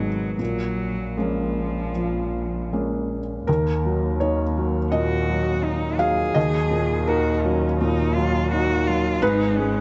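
A felt-muted upright piano sits up front in this fragile, melancholic neoclassical fragment, its soft, boxy and intimate tone carrying audible action noise from the thin felt as it supplies the accompaniment across a broad span from Eb2 to F5. A single bowed cello plays a second line with a focused, vibrato-rich sound. A lone bowed double bass anchors the low end from a more distant position, with vibrato of its own. The music moves in 4/4 at roughly 77-85 BPM with a rubato feel in Eb minor, opening on Bbm7, shifting into a new section on Ebm7 at 3.5 s, and reaching Abm at 9.2 s. Light reverb and a mellow, rolled-off top end give the whole a hushed, close atmosphere, cut from a longer piece.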